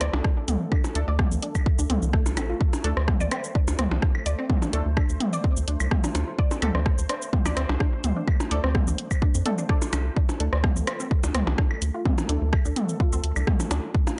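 A dry, gritty recording with its highs rolled off carries this sparse, clinical minimal techno excerpt, where a punchy overdriven electronic kick entering at 0.2 s and a rubbery, hollow square bass with sidechain pumping sit up front beneath an overdriven house kit of bright hats, cabasa and rim click, a roomy click kit of claves, blips, rim click and toms through analog delay, a squelchy resonant blip-pluck riff in the background with phaser, chorus, pumping and tape echo, a bubbling stepped-filter texture with chorus, reverb and pumping, and a muted, deep dub chord stab with chorus and analog delay from 1.0 s to 12.4 s.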